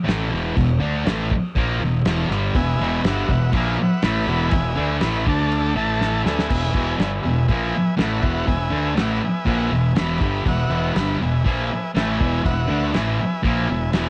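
A bright, double-tracked fuzz guitar riff with a cassette-tape grit opens this raw, rowdy garage rock cut in E major at 121 BPM, joined almost at once by a growly, overdriven fingered bass and a cloth-damped, thuddy drum kit with a fat snare, tight kick and dark cymbals sitting in the background, before a buzzy combo organ with heavy vibrato enters at 2.6 seconds holding sustained chords and, after a drum fill at 6.0 seconds, plays a fill from 9.0 to 10.5 seconds, all in the ambience of a home recording on cassette.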